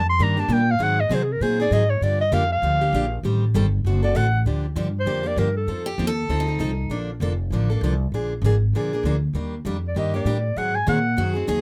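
Closely miked and nearly dry, this bittersweet, virtuosic fragment of acoustic string swing is led from the opening by a breathy clarinet, whose vibrato and scooped notes carry a jazz solo until 4.5 s and return briefly near the end. A woody, growly pizzicato upright bass sits up front throughout, while a bright picked plugged-in steel-string guitar supplies accompaniment over minor-key changes. A boxy parlour guitar adds short picked second lines at 5.9 s and 11.2 s.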